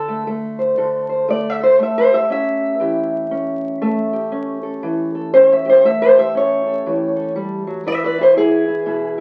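Heard through the crackle of a very old 78 rpm record with a moderate studio ambience, this short cut of acoustic country blues sets a dark, boxy, fingerpicked ladder-braced acoustic guitar up front, playing alone from 0.0 to 9.2 seconds. The mood is swaggering and laid-back, with a swung 4/4 feel at 119 BPM in A mixolydian, as the guitar moves from D5 to A7 and reaches E at 7.9 seconds.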